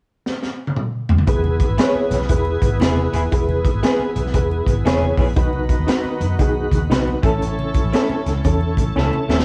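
A gritty, cassette-worn band sound in a stone room drives this danceable uptempo 1960s-style soul excerpt in E major at 117 BPM with a swung feel, as a crunchy, up-front breakbeat kit with punchy kick and high-tuned snare fills alone from 0.3 seconds before round, foam-muted fingered bass, reedy tremolo electric piano, shouting tonewheel organ with key click and slow rotary, mellow octave-doubled horns in the background and very quiet low-tuned congas join at 1.3 seconds, with slightly broken-up lo-fi guitar stabs arriving at 1.8 seconds over chords moving from E to B to A.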